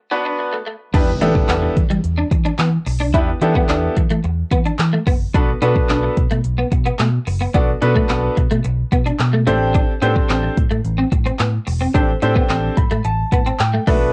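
A straight 4/4 groove at 109 BPM drives this energetic, confident dance-pop passage in E minor, where a bright, up-front concert grand piano with audible action noise and sidechain pumping and a slightly broken-up, chorused electric guitar riff open together before a deep house kit of deep kick, smooth hi-hat, handclaps and crash, roughened by 12-bit sampler grit, joins a round, foam-muted, punchy electric bass at 0.9 s alongside a very quiet electronic impact, with the piano adding a fill from 12.5 s and the whole mix carrying light reverb and the hazy character of a home cassette recording.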